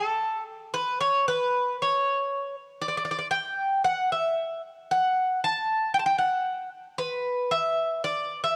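In a straight 4/4 at 116 BPM, this hopeful, sunny Greek folk excerpt features a solo acoustic bouzouki, bright and metallic with picked double strings and some octave-doubled courses, sitting up front between A4 and A5 for 8.6 seconds, its cassette-tape coloring set in a lush hall reverb on a home recording.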